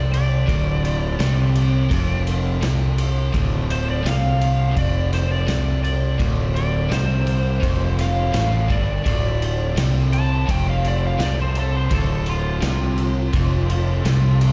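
A straight 4/4 pulse at 84 BPM drives this heavy, gritty slice of blues rock power trio and southern rock in D minor, cut from a longer piece and sitting on a D minor chord throughout. A vintage acoustic drum kit enters at 0.1 s with a punchy kick, medium-tuned snare and dark ride cymbal, its tone rolled off at the top and pumping in a small room. Up front, a fuzz-drenched fingered electric bass growls low, while a double-tracked, picked guitar crunches out a bright riff in the background. Over this, an overdriven slide guitar takes a fingered solo from the start to 14.4 s, its bright melody carried on a slapback echo. A very quiet, thick tonewheel organ holds sustained chords beneath, gritty with chorus vibrato and a slow rotary speaker, and the whole band sounds like a live gig heard through the venue's PA with recital hall reverb.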